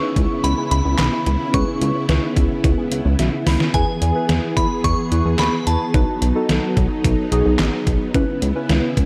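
Synth-pop at 109 BPM in 4/4 with a straight feel, this cool, melancholic excerpt in C# minor sits in a dreamy mix soaked in a lush hall reverb. A glassy, crystalline synth bell carries the melody with chorus, tremolo and delay until 6.7 seconds, while muted, felt-like synth keys play a soft, intimate accompaniment and a vintage string machine on violas holds evolving sustained chords beneath. A dark, round pluck runs arpeggios in the background through the opening section, dropping out at 3.7 seconds as the harmony moves from C#m7 to E, then B, and back to C#m7. Up front, a glossy chorused synth bass and a detuned 8-bit drum machine enter at 0.2 seconds, the drums thumpy and overdriven with handclaps, hi-hat, kick and snare, re-recorded in a small room. A synth keys fill and a drum fill lead into the second section at 3.7 seconds.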